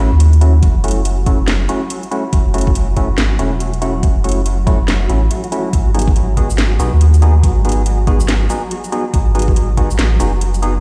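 Heard through a big sound system in a bare stone room with light digital ambience, this heavy, dark deep dubstep cut moves at 141 BPM in a half-time 4/4 with swung 16ths, in F# dorian and tuned to A4 = 435 Hz, shifting from F#m7 to G#m7 at 5.7 seconds. A soft, round sub bass sits up front beneath hollow, nasal organ stabs treated with chorus and dub echo, while a grainy, flickering granular texture with its own reverb hovers in the background. A tape-warm garage kit of cracking snare, metallic hats and shaker comes in at 0.2 seconds, joined at 0.6 seconds by a knocking electronic kick.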